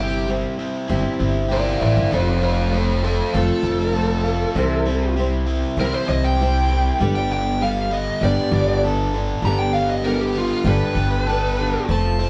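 Folk rock and heartland rock at a hopeful, jangly 98 BPM, this excerpt from a longer piece features a smooth overdriven lead guitar taking an up-front solo over a shimmering, octave-doubled picked twelve-string acoustic, a biting double-tracked overdriven electric riff and a thumpy, woody pizzicato upright bass on gut strings, all played live in one large studio room with moderate reverb as the chords move from C/G through F and C to Gadd9.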